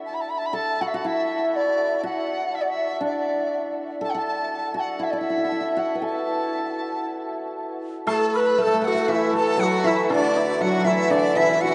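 A large bamboo dizi carries the melody from 0.1 seconds, its pure, mellow tone buzzing from the membrane and colored by vibrato and tongued notes, sounding both up front and oddly distant, with a slightly unsteady pitch. This short excerpt of Chinese traditional chamber music moves at a slow, rubato 60 BPM in 4/4 and the A zhi mode, with a festive yet graceful mood. A hammered dulcimer opens the piece at 0.0 seconds as a second line, its shimmering, ringing strikes sitting close to the listener. At 8.1 seconds the music moves into a new section, where a breathy second dizi joins with a straight tone, crisp chiff and tongued attacks, higher in the range and a touch louder than the others. A very quiet, dark woodblock enters at the same moment, heard in a live room. A huge, wet reverb with a long tail places the whole ensemble in a vast, echoing space, with the top end gently softened.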